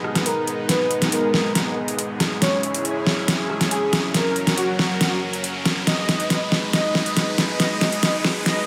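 Heavy wobble dubstep in G# minor at 139 BPM with a half-time feel, chaotic and aggressive, building up as an up-front, overdriven electronic drum kit with a deep snare, metallic hats and rim clicks plays a fill throughout, a lush, airy detuned supersaw pad sustains chords moving from G#m through C#m/G# and F# back to G#m, a mellow, smooth supersaw melody with low-pass filtering, digital delay and a filter sweep enters at 0.3 seconds, and a background riser joins at 1.6 seconds, with the whole mix placed inside a moderate hall reverb.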